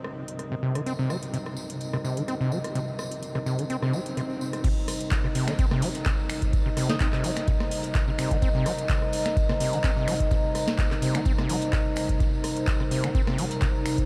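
Acid house at 127 BPM in C minor, hypnotic and gritty, built on a sustained Cm7: a dark, detuned analog pad and a warbly, nostalgic tape-like pad pump under sidechain with chorus, while a squelchy, resonant acid bass riff enters at 0.5 s with distortion, cassette tape grit and diffuse ambient delay over a booming, overdriven analog drum machine of crisp snare, metallic hats, claps, snaps, rim clicks and crash, a bright background tambourine, and a very quiet electronic swell that leads into the drop at 4.6 s, where an up-front overdriven deep kick and a very quiet, dry reggae kit join, and a breathy alto saxophone with light vibrato and delay sounds one brief Eb4 at 6.9 s, all in a dreamy mix soaked in huge ambient reverb.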